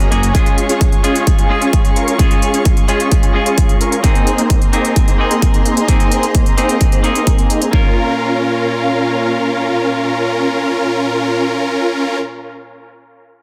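A dense, heavily limited modern mix with light reverb opens this anthemic, euphoric excerpt of festival progressive house in Bb minor at 130 BPM, where huge, detuned supersaw chords carry the riff up front under a filter sweep and dub echo, moving through Db, Abadd9 and Bbm. A bright, twangy clean electric guitar with dub echo and a dark, woody symphonic string section with light vibrato fill out the harmony, and all three pump against the sidechain. A punchy, tape-warm kick and crisp electronic hats in a small room drive the groove until the hats stop at 7.7 seconds and the kick at 7.8, leaving the guitar, strings and supersaws to sustain the closing Bbm passage.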